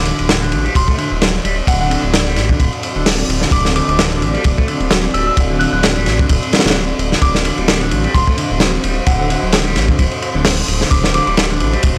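A crunchy, up-front breakbeat kit swings at 130 BPM in 4/4 over a rumbling detuned saw bass on D7, while a clean hollow-body guitar riff with tape echo, a soft FM bell melody with 12-bit sampler grit, and a moody pumping pad entering at 1.4 seconds sit in the background of this raw, funky breaks excerpt recorded dry in a small room.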